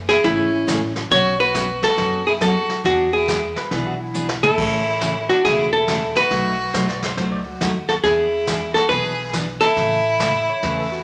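Country western swing at 139 BPM in A major, down-home and swinging, with a 65% swing on the eighth notes, cut from a longer piece. An up-front, hollow-bodied archtop guitar carries the melody with a dark, clean picked tone, while a clear fiddle with light vibrato plays a biting second line just beneath it. A woody, thumpy upright bass with gut strings and a bright, full-bodied steel-string acoustic guitar fill out the accompaniment over a vintage brush kit with dark cymbals, a punchy kick and a gritty, rolled-off sampler edge. A pedal steel guitar enters at 3.6 seconds with a compressed, fingerpicked tone and volume swells, just before a drum fill at 4.1 seconds. The chords move from Amaj7 through Bsus2, E7 and B7 before returning to Amaj7, all set in a moderate large studio reverb.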